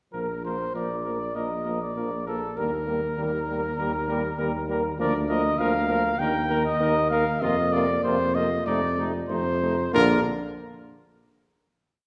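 Warm and noble in mood, this short classical piece for brass quintet unfolds as a single phrase that settles onto a final chord at 9.9 seconds. The mellow trumpet carries the melody up front with classical vibrato, while the flugelhorn, clear and vintage in tone, plays a second line of repeated notes and sustained chords. The French horn, with its own vibrato, and a present trombone set in the background fill out the accompaniment with repeated notes and held chords. The tuba anchors the ensemble up front with a smooth-topped, lightly vibrato bass on the beats. The harmony moves from Bb through Eb and Bb/D to Fsus4 and F7 before resolving to Bb, and the quintet is heard from further back in a reverberant recital hall.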